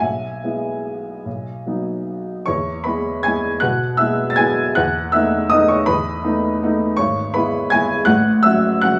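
Classical piano waltz in E major and 3/4, playful and sparkling, moving with a free rubato feel at roughly 141-172 BPM in this short cut from a longer piece. A solo upright piano plays throughout, woody and slightly detuned with a vintage character, long sustain, and a close, up-front presence spanning G#1 to A6. A moderate recital-hall reverb surrounds it as the harmony moves from E over B toward B7 over E and F#m over A, with a new section beginning at 2.5 seconds.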